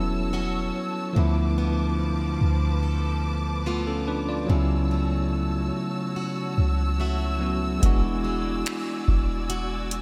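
Contemporary R&B at a dreamy, smooth 72 BPM in A major, this short section drifts over chords moving from A6/E through Dm6 and A6/C# to E9, with a bell-like, barky tine electric piano carrying the accompaniment and a lush, bowed string section holding sustained chords. A picked, plugged-in steel-string acoustic guitar adds full-bodied arpeggios with delay and a touch of finger squeak, while a clean, deep 808-style bass sits up front with a fast attack. At 7.8 s a booming analog drum machine joins with a deep kick, metallic hi-hats and finger snaps, all framed by light reverb and a bright 1980s-style digital production.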